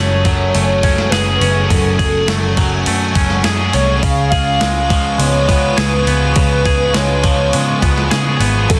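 A pure, round sine lead carries the melody in this dreamy, hazy excerpt of shoegaze-tinged dream pop rock, its fast-attack, sustained tone shimmering with chorus, phaser, vibrato and a slapback echo. Beneath it, a thick fuzz guitar and a twangy, compressed clean electric guitar both play riffs, the fuzz part dark and distorted through analog chorus, while the twangy guitar carries a reverse reverb. A dark, foam-muted picked bass sits firmly in the mix with a round, amped sound. From 0.2 seconds, a clean 12-bit drum machine plays up front with a thumpy kick, medium-tuned snare and hi-hat, and an icy, crystalline pad holds slow-attack chords in the background with chorus and its own reverb. At a straight 103 BPM in 4/4, the harmony moves from F#madd9 to C#7 at 4.0 seconds, all within a dense, heavily limited modern master with little room sound.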